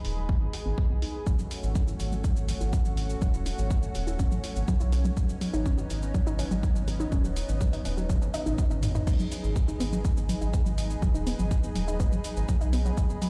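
Melodic techno at 123 BPM in G# phrygian, driving and dramatic, cut from a longer piece: an up-front, punchy layered kick anchors a round, deep analog bass and a lush, thick unison pad with chorus, both pumping against the kick, while a warbly, dusty lo-fi pluck spins arpeggios through chorus and tape echo, and a small-room analog drum machine adds crash, hi-hat, shaker and toms with a fill from 8.1 to 9.1 seconds, all over a G#m to A6/G#, Badd9/G# and G#m7 progression in a big, reverberant room.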